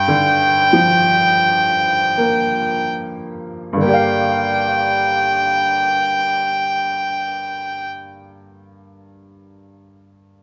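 In a free, rubato triple metre that slows through the opening seconds, this mournful, haunting Celtic slow air is cut from a longer piece. A single bowed fiddle carries the melody with an earthy, distant tone until 7.9 s, over a bright, woody and slightly detuned upright piano that opens its accompaniment on a Gm7 chord and rings on to 10.4 s. Both sit up front, captured by close, detailed microphones with light reverb.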